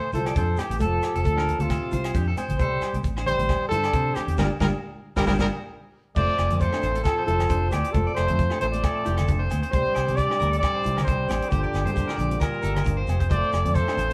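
A moderate stone-room reverb surrounds this short cut from a longer highlife guitar band piece, played live in one room at 134 BPM in 4/4 with a light swing on the sixteenths, in F major, with a danceable, warm mood. A vibrato-tinged trumpet carries the melody up front with a soft attack and a jazz flavour, while a punchy trombone with light vibrato plays a second line in the background. A slightly broken-up, twangy electric guitar picks arpeggios over a small, fingerpicked nylon-string guitar, and a dark, round, foam-muted electric bass gives a punchy low end. A compact cocktail kit with dark cymbals, a high-tuned snare and a tight kick sits with close, thick-skinned low congas, a grainy shekere and ringing agogo bells in the background. The chords move from F through Csus2 to Gm7, with a drum fill and band accent from 4.4 to 6.2 seconds, and a reedy accordion with slow beating enters at 6.1 seconds to hold sustained chords beneath the rest.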